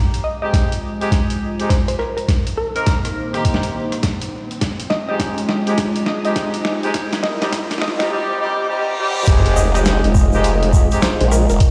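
Over a swung 103 BPM glitch hop groove in F minor, a gritty, pitched-down kick and boom bap sampler-style kit drive a playful build-up of moody pad chords, woody wave-folded plucks, distant horn stabs with 12-bit grit and dub echo, and a background riser and reverse cymbal until the drop at 9.3 seconds brings in a detuned, overdriven wobble bass and a grainy egg shaker, all resounding through a stone-room hall.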